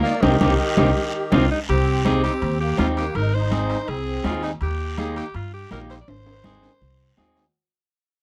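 A straight, driving cumbia groove in 4/4 carries this short, fiery fragment cut from a longer piece, with a raspy guiro scrape alongside thick-skinned congas and ringing metal-shell timbales, the latter two sitting in the background. Upright bass, plucked and woody, stands up front with the picked electric guitar, whose scooped tone sits at the edge of break-up, as the band hits a passionate accent and a drum fill early on. A raspy, gritty alto saxophone leads the melody with punchy force and light vibrato, while a reedy, shimmering musette accordion adds a second line until it drops out at 4.5 seconds. The harmony moves through C minor, A-flat and E-flat as the music begins fading from 1.7 seconds, with another drum fill closing things out. The sound is dry and close, like a 1970s studio session.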